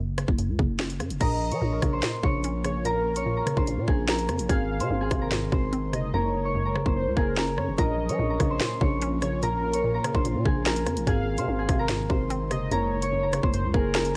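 A half-time drill groove from an electronic kit, with a hard-clipped kick, sharp snare, rim clicks, crashes and hats, drives this menacing, cold hip hop clip; after a short break the kit settles in, and its hats drop out between 6.1 and 7.8 seconds. A growling, buzzy 808-style bass and a hollow, bouncy square-wave pluck with chorus sit under a mellow, ringing fingerpicked Celtic harp that carries the melody from 1.2 seconds. A velvety synth lead with chorus, delay and vibrato adds a second line, while a very quiet, ethereal pad holds sustained chords beneath, all framed by a digital ambience with lossy compression artefacts.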